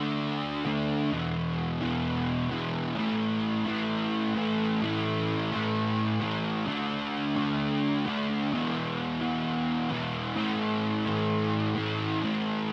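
A lone fuzz guitar opens this hazy, dreamy rock excerpt at 130 BPM in straight 4/4, its dark, distorted electric tone double-tracked and placed up front, picked power chords cycling through D5, E5 and A5. Analog chorus and tape echo blur the fuzz into a dreamlike smear, ranging from E2 to D4, while light reverb frames the solo guitar through to 12.7 seconds.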